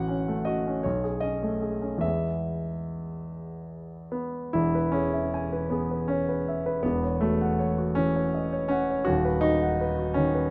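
Classical romantic character piece for solo grand piano, lyrical and passionate in mood, cut from a longer work. It moves in a slow, rubato 6/8, around 46-55 BPM counted in dotted quarters, and sits in E major. The piano plays alone for the full 10.5 seconds, spanning a range from D#1 up to G#5, with a polished, present tone placed up front. The harmony opens on F#m/A and a rich B13 before settling on E, then a second section from 4.6 seconds drifts through F#m7/E toward B/D#. Light reverb surrounds the instrument, and the production has a dark, warm cast overall.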